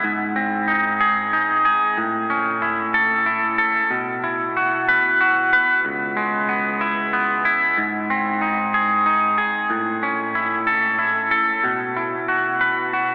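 A brooding, melancholic rock fragment, cut from a longer piece, moves at a slow 62 BPM in 6/8 as a lone electric guitar, picked, clean, compressed and twangy, sits up front and circles through G#, A, Bsus4 and C#m7 from 0.0 to 13.1 seconds, tuned to A4 = 444 Hz and bathed in a cavernous cathedral reverb that clouds the lo-fi, AM-radio tone of a church or concert hall.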